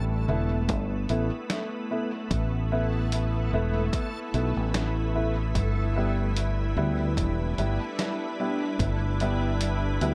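Ambient dub in a hazy, spacious mood, cut from a longer piece, with a soft organ-like pad holding sustained chords through ensemble chorus and reverb while a round, punchy fingered electric bass with tube saturation sits up front. A dark, woody upright piano adds short stabs and a muffled, pitched-down sampler-style kit of congas, hi-hat and snare plays from 0.3 seconds, both thrown into dub echo, and an overdriven electronic kick drum enters at 0.7 seconds and stops at 9.0 seconds. Behind them a reversed, dreamy granular texture drifts in the background of a lightly reverberant, echo-heavy mix.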